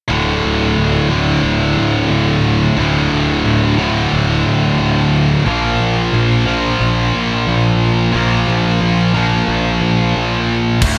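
A straight 4/4 pulse at 90 BPM drives this heavy, dark metal passage in D minor, cut from a longer piece. Two distorted high-gain guitars, one of them scooped, play the riff together from the start over a growly, fuzz-laden picked electric bass, all up front in light reverb, moving from D5 to Bb5 at 5.5 seconds. Only at 10.8 seconds does a tight studio drum kit burst in, its tight kick joined by china and crash cymbals.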